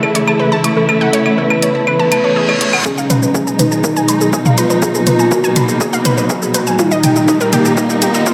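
A straight 4/4 pulse at 122 BPM drives this dark, melancholic melodic techno excerpt, with an overdriven analog drum machine of claves, hi-hat, shaker and toms playing from the start, and a layered, punchy electronic kick, re-recorded in a large room and sitting in the background, arriving at 2.9 s as the build-up begins. Up front, a lush, bowed symphonic string section holds expressive sustained chords with a smooth top and sidechain pumping, while a soft octave-layered synth lead carries a round, sub-octave melody with vibrato, chorus, phaser and diffuse ambient delay, and a bright, detuned analog pluck spins arpeggios in a higher register. A very quiet reverse cymbal and riser enters at 2.1 s, and the whole mix is dreamy and soaked in a lush hall reverb as the harmony moves from A to G#m7 and then D#.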